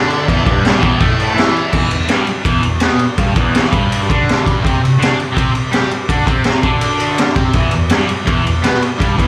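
Garage rock at 165 BPM in E minor, menacing and gritty, cut from a longer live club set heard through the venue's PA with small-room reverb, where a crunchy, double-tracked overdriven electric guitar riff, colored by phaser and slapback echo, moves from Em to C5 at 4.6 seconds and back to Em, while an up-front acoustic drum kit with a boomy kick, high-tuned snare, crash and ride cymbals comes in at 0.1 seconds, sounding saturated and mid-forward with a rolled-off top.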